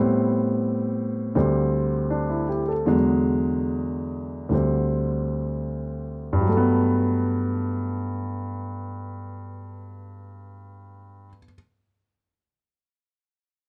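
Loosely swung and rubato, slowing over its first 6.5 seconds before settling on a Gmaj9, this short, playful fragment of solo jazz features an intimate, up-front grand piano whose action noise is plainly audible beneath a warm, dark sheen of light reverb as it moves from Am9 through D7sus4 and E9 chords.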